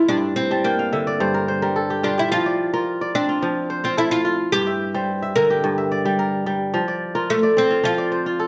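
A straight, steady four-beat pulse carries this short cut from a longer West African traditional piece, its warm, hypnotic mood set by fingerpicked kora arpeggios that ring crisply up front, with a kora fill from 0.5 to 2.3 seconds. Over them, a bright, woody oud plays the plectrum-plucked melody on doubled strings, touched with a slapback echo, as the harmony moves between G minor and F. Both instruments sit in a moderate recital-hall reverb.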